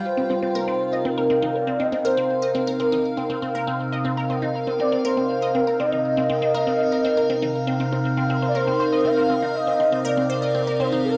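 Expansive and cosmic, this excerpt of ambient, sequencer-driven space music moves at 120 BPM in a straight 4/4, resting on a single C minor seventh chord throughout. An evolving wavetable pad sits up front with sustained chords from C3 to G5, its bright, morphing unison tone arriving with a slow attack and long release, colored by phaser, its own reverb and a plate reverb. Alongside it, an expressive synth lead carries a smooth, dark melody between Bb4 and F5, with a soft attack, vibrato and sustained notes, treated with analog chorus, cassette tape character, plate reverb and delay. A resonant blip pluck plays a riff from C4 to Eb5, a juicy, squelchy sawtooth sound with a sub octave, a moving notch and a fast attack and short decay, run through phaser and delay. The excerpt has the feel of a home cassette recording set in a wet studio reverb with a short 0.6-second tail, all three parts sounding together from the opening moments to about 11 seconds.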